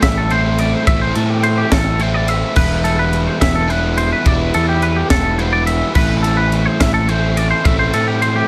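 A growly, fuzz-soaked fingered bass sits up front in this bright, wistful math rock and midwest emo excerpt at 71 BPM in 6/8, joined by a double-tracked, biting overdriven guitar riff, scooped, twangy arpeggios on a clean electric guitar with analog chorus, a crisp fusion kit with a high-tuned snare, punchy kick and pumping small-room grit, and a barely audible twelve-string that drops out after 0.9 s, all moving from Am7 through Em back to Am under light reverb.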